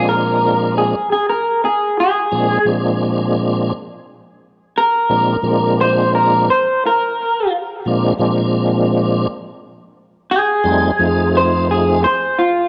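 A moderate echo-chamber reverb with a digital ambience frames this laid-back, swaggering blues excerpt in Bb mixolydian, moving at 86 BPM in a straight 4/4. An up-front electric guitar through a small old amp takes a clean solo from 0.0 to 12.7 seconds, its slightly broken-up, lo-fi, compressed tone touched by subtle chorus and tape echo. Alongside it, an equally up-front, full, lightly overdriven tonewheel organ with slow rotary speaker and chorus vibrato accompanies over the Bb9 harmony until the chord shifts to F9 at 10.6 seconds, then stops at 12.1 seconds.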